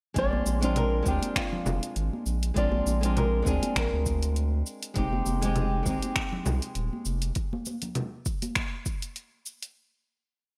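A relaxed, smooth sunset chillout groove at 100 BPM in 4/4 with a 16th-note swing, in F dorian, where an overdriven deep house drum kit of cabasa, closed hi-hat, low conga and finger snaps sits up front over a deep, soft electronic kick, bright compressed congas murmur in the background, a round, dark analog bass plays a syncopated riff, one fingerpicked flamenco guitar holds rootless chords with syncopated pushes and finger squeak through delay while a second flamenco guitar states a motif-based call-phrase melody with vintage 12-bit sampler grit until 4.3 seconds, all over a Bb7 to Fm7 change in a bright 1980s-style digital production with light reverb.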